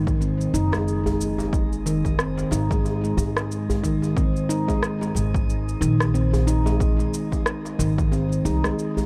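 The recording has a dark, warm production with light reverb and a touch of studio ambience around it, and it is cut from a longer piece. This is earthy organic downtempo at 91 BPM in 4/4, with a gentle 16th-note swing, set in Ab mixolydian over a single Ab7 chord. Up front, a bright, ringing handpan of nitrided steel plays meditative arpeggios with sharp finger strokes, trailed by digital delay and shimmer reverb. Beneath it, a woody, thumpy upright bass with steel strings is played pizzicato, its tone pumped by sidechain compression until it stops at 8.7 seconds. A punchy, layered electronic kick and a produced electronic shaker with rim click, both re-recorded in a small room, drive the groove. A tight, cracking djembe with metal rattles, played with soft hands in a live room, enters at 0.7 seconds and sits in the background.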